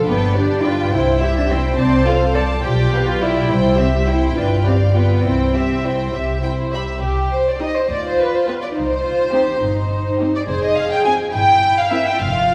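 Heard from further back through a wet scoring-stage reverb, this graceful, cheerful fragment of a classical-period movement for string orchestra in 6/8 sets a pure, floating violin second line up front above a quieter, lightly vibrato violin melody, with dark, smooth-topped violas carrying the accompaniment and intimate cellos and up-front double basses sharing the bass, all bowed sul tasto, before the harmony turns to minor at 7.0 s.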